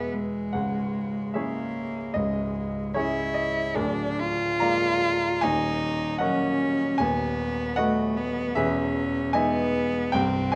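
Yearning and elegiac, this romantic classical duo moves with rubato in 4/4 as a single bowed cello sings a rich, smooth, even melody with vibrato up front, while a clear, present baby grand piano accompanies across a broad range, both captured by close, detailed microphones in a moderate recital hall reverb, tuned to A4 = 437 Hz and cut from a longer piece.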